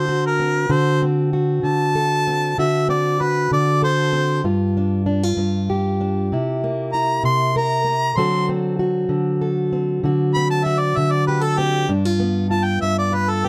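Rollicking and swaggering, this short excerpt of acoustic country blues rolls along at 64 BPM in a straight 12/8 metre, tuned slightly below standard pitch. A clear harmonica carries the melody up front with vibrato and scooped, jazz-inflected notes, taking a brief solo from 11.9 seconds, while a boxy, parlour-style plugged-in steel-string guitar fingerpicks the accompaniment through changes from D7 to G5, C7 and G7. Close, detailed microphones and light reverb keep both players intimate and present.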